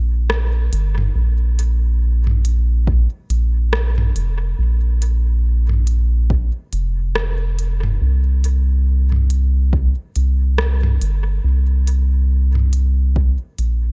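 A round, dark analog bass with a filter sweep opens this hazy, deep ambient dub excerpt at 70 BPM in swung 4/4, joined at 0.3 seconds by a crisp-hatted electronic kit of hi-hat, rim click and toms trailed by dub echo, then at 2.9 seconds by an up-front, tape-warm electronic kick, before a fade-out begins at 12.6 seconds.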